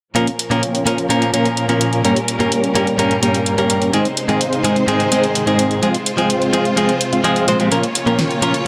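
Set in a light reverb, this euphoric, emotional festival progressive house passage runs at 127 BPM in a straight 4/4 and is cut from a longer piece. A huge, detuned supersaw carries the riff, its thick sawtooth unison layered with a sub octave and a noise layer. The supersaw is compressed, with a fast attack, vibrato, a low-pass filter and digital delay. A bright, twangy clean electric guitar, recorded direct and sitting up front, enters at 0.1 s with picked accompaniment through tremolo and delay. Behind them, a lush symphonic string section holds expressive bowed chords with a soft attack, shaped by a low-pass filter and a filter sweep from 0.2 s to 8.7 s. An electronic pop drum kit with a fat snare and metallic hi-hats drives the groove as the harmony moves from Bbm through Gdim, Ab and Fm before returning to Bbm.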